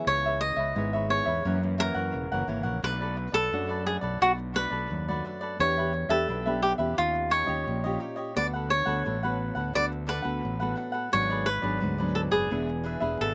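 Lively and festive, this short samba cut from a longer piece moves in a straight 4/4 feel. A crisp, up-front cavaquinho carries the melody, while a second, mellower cavaquinho picks out accompaniment, both touched by a slapback echo. A full-bodied nylon-string guitar adds deep, classical fingerpicked support, also with slapback echo. From 0.1 seconds a fingered electric bass joins, bright and amped with overdriven fuzz that gives the low end a gritty bite. The harmony travels through rich seventh chords such as C#m7, F#7, Bm7 and Em7 before settling on E7, and the dry open-air sound keeps every part close and direct.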